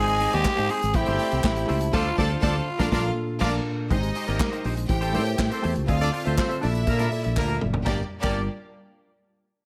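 A raspy, growling tenor saxophone carries the melody up front until 3.6 s in this driving, danceable disco cut at 121 BPM, over lush bowed violins heard at a distance, a mellow tine electric piano with subtle chorus, a clean semi-hollow guitar with ensemble chorus set in the background, punchy octave-doubled horn stabs, a growly fingered bass, a dark vintage drum kit with a tight kick, its own handclaps and a fill at 7.4 s, and a very quiet, hollow group handclap, all set in light studio reverb.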